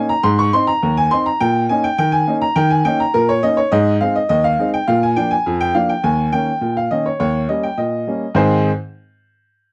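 Jaunty and cheerful, this short ragtime fragment cut from a longer piece moves at 103 BPM in a straight 2/4 in Ab major, carried entirely by a solo upright piano. The piano sounds woody and smooth with a vintage character and long sustain, sitting up front in a dry, close 1970s-style studio sound while ranging from Eb2 to Db6. Its harmony travels from Ab through Eb and Bb to an Eb7 before settling back on Ab at 8.4 seconds, just as a new section begins.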